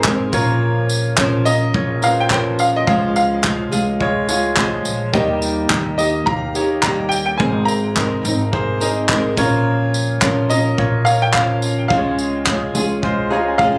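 Acoustic pop with a carefree, easy-going mood, this short cut from a longer piece moves at 106 BPM in 4/4 with a swung sixteenth-note feel. An upright piano with a woody, vintage tone and short sustain carries the melody in a high register, touched by a digital delay. Beneath it, a concert grand adds polished accompaniment with deep bass, long sustain and audible action noise. A double-tracked, fingerpicked nylon-string guitar and a pizzicato upright bass fill out the harmony over a loose indie kit of handclaps, tambourine and a tight, up-front kick. The chords cycle through Bbm, Db, Eb and Abadd9, and the drums and grand piano both play fills from 13.0 to 13.8 seconds. Captured on a phone in the room, the sound carries club reverb and compression.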